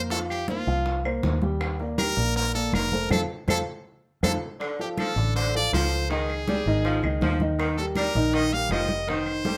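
A brilliant, forceful trumpet with vibrato leads this joyful, festive salsa excerpt at 160 BPM, over a dark, mellow upright piano, a punchy foam-muted electric bass, background congas, bongos and woody claves, with a band accent at 3.1 seconds and a clear saxophone section entering at 4.6 seconds, all in a moderate studio reverb as a live band in one room.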